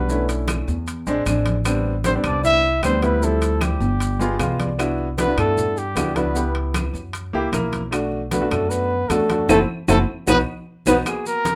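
A dark, breathy trumpet carries the melody up front over a soft-attack trombone second line with vibrato, a present, short-sustain grand piano and a woody, pizzicato upright bass, opening this sultry, sophisticated Afro-Cuban jazz excerpt at 153 BPM, as ringing metal-shell timbales, background congas, grainy close maracas and distant claves fill in the moderate club reverb, with a piano fill at 4.0 seconds, a band accent from 9.5 seconds and a drum fill at 10.3 seconds leading to a closing B chord.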